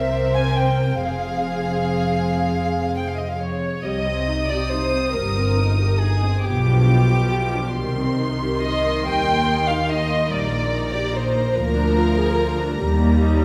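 Classical slow romantic movement for string orchestra in a rubato 6/8 at 43-49 BPM, yearning and elegiac, moving from F minor to C minor at 3.8 s. Throughout, sul tasto violins carry the melody over an up-front second violin line, violas with vibrato and a soft attack, a dark cello section in the background and a double bass section, all bowed intimately and close inside a wet scoring-stage reverb, in this excerpt from a longer piece.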